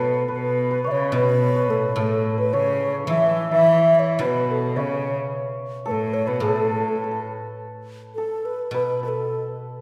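A mellow, airy low xiao with vibrato and a crisp attack carries the melody through this pastoral yet festive excerpt of Chinese traditional chamber music, with a shimmering hammered dulcimer as a second line, a rich, nasal, earthy bowed cello that drops out at 7.3 seconds, and a silvery fingerpicked guzheng underneath, all in a free rubato feel and bathed in the lush reverb of a church or concert hall.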